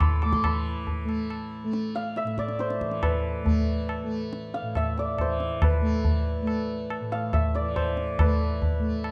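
Hindustani classical music in raga darbari on A, this solemn, meditative fragment is cut from a longer piece and moves at 139 BPM in a straight 3/4. The santur carries the melody between B4 and D6, its hammered strings mellow and shimmering as they ring out up front. Beneath it the tanpura holds a drone from A2 to A3, softly plucked with a buzzing, warm, shimmering resonance. The low-tuned tabla sits close and dry with a short ring, standing a little louder than the other two parts. All three play throughout the 9.1 seconds, set in a recital hall reverb with a dark production, and tuned to A4 = 438 Hz.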